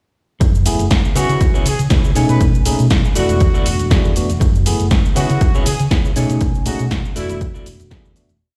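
At 0.4 s this filtered disco house piece arrives already in full drop, with an up-front, punchy four-on-the-floor electronic kick, an analog drum machine's programmed closed and open hats, shaker and snare backbeat, a dark, round, amped hollow-body short-scale bass jumping octaves with tube saturation, and a clean, fingered semi-hollow guitar playing a close-voiced funk chord rhythm. At 120 BPM in 4/4 with a light 16th-note swing and set in F# minor, the groove feels sensual and nostalgic as it cycles through F#m11, C#m7, B13 and E9sus4. A tine electric piano joins with a rootless rhythmic chord riff through a combo amp, colored by phaser and gritty 12-bit sampler texture. From 1.2 s a brilliant, tight jazz-style horn section with light vibrato adds short answering phrases soaked in tape echo. The guitar, bass, piano, horns, hats and percussion all breathe with sidechain pumping. The sound is dry, played back on a big system in a bare stone room, and the whole piece fades out from 5.7 s to 8.4 s.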